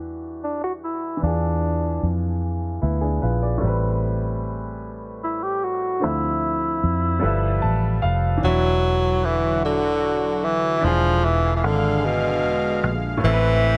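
Sultry and yearning, this slow 6/8 R&B passage at 50 BPM, cut from a longer piece, sets a breathy, subtone tenor saxophone melody with scooped notes and light vibrato up front over a dark, foam-muted fingered electric bass and an intimate grand piano whose action noise can be heard, with a filter sweep through the first section, a piano fill from 7.2 to 8.4 seconds and a lush, detuned sawtooth pad with chorus arriving at 9.1 seconds, all in light reverb.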